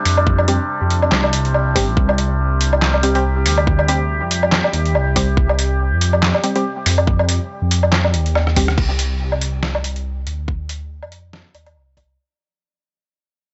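A nasal, resonant sawtooth drone with moving overtones opens this meditative, heavy deep dubstep excerpt in C minor at 141 BPM, swung and in half-time. It is quickly joined by a rumbling, detuned saw bass with tube saturation, a tight, overdriven electronic kick, and a muffled, pitched-down sampler-style kit of snare, hi-hat, rim click, handclaps, woodblock and crash, while muted filter-pluck chord stabs drift through chorus and dub echo over the drop, which ends with a drum fill at 8.4 seconds. From 8.8 seconds the drone and stabs stop and the piece fades out as a filter sweep works on the bass, all in a dry, gritty recording with a rolled-off top.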